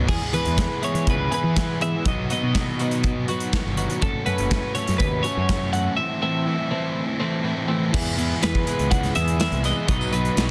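A straight 4/4 pulse at 122 BPM drives this upbeat, carefree indie rock excerpt in E major, where a punchy, up-front rock drum kit with bright cymbals and a growly fuzz bass push through a chord cycle of E, B, F#m and Am. A dark, biting overdriven guitar and a background twelve-string electric guitar with lush chorus share the riff, while a second clean twelve-string carries the melody through tape echo. A very quiet, jingly tambourine joins at 8.1 seconds as the music moves into a new section at 7.9 seconds, all within a dense, heavily limited modern mix with light small-room ambience.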